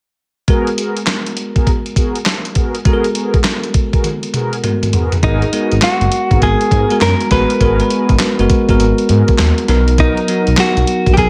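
Slick and confident, this new jack swing R&B excerpt moves at 101 BPM in G# minor with a swung 16th-note feel, opening on a G#m9 chord as a crisp 8-bit drum machine with a thumpy kick, tape-flavored 12-bit sampler grit and large-room character sits up front beside a bell-like tine electric piano and round, chorused synth brass stabs with digital delay. A drum fill at 4.0 seconds leads into the second section at 5.2 seconds, where a smooth, gliding sawtooth synth bass with portamento and a clean, picked, direct-recorded electric guitar melody bathed in spring reverb join in. The harmony shifts to Bmaj7 at 9.7 seconds, all within a digital ambience.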